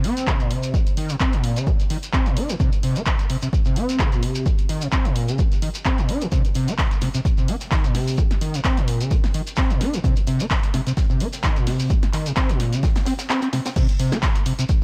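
Hypnotic and gritty, this acid house excerpt runs at 129 BPM in C phrygian with a swung 16th feel, driven by an up-front, squelchy overdriven acid bass riff whose resonant sawtooth tone carries distortion, ensemble chorus, delay and sidechain pumping. A punchy analog drum machine with crash, handclaps, hi-hat, rim click and snare, a dry electronic kick, and a grainy shekere fill out the groove, while a very quiet, high-tuned funk drum kit enters at 6.3 seconds. The kick drops out at 13.3 seconds before a drop at 13.8 seconds, all within a dark studio reverb.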